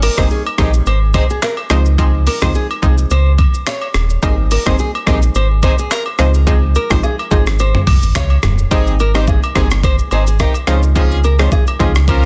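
A lightly swung 107 BPM afrobeats groove in 4/4 rides on a gritty, sampler-style breakbeat kit with a thumpy kick, clipped snare, handclaps, hi-hat, rim click, shaker and toms, over a deep, full sub bass with octave that sits up front, while agogo bells and woodblock add saturated percussion. In this joyful, breezy Ab major excerpt, a round, detuned analog pluck with chorus comps through Abmaj7 and Dbmaj7 as a small, fingerpicked nylon-string guitar repeats a riff through digital delay. A punchy horn section with light vibrato sounds briefly at the start and then returns at 4.7 seconds to carry a second line to the end, all in a dry, dense, heavily limited modern mix.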